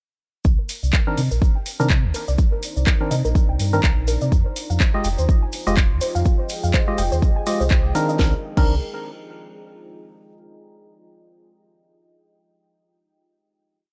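A punchy, up-front electronic kick drives this smooth, late-night deep house piece at 124 BPM in C minor. Alongside it play a house kit of cracking snare, claps, metallic hats and crash, grainy hand-played cabasa sixteenths, and a deep sub bass with octave playing a funky syncopated line with sidechain pumping. A warbling, lo-fi pluck runs a 16-step arpeggio through chorus, tape echo and a filter sweep while hollow, organ-like stabs play syncopated chords moving from Cm9 to Fm9, and a moody, detuned ambient pad with built-in reverb enters at 2.3 seconds, then holds the final Cm9 alone from 8.8 to 10.1 seconds.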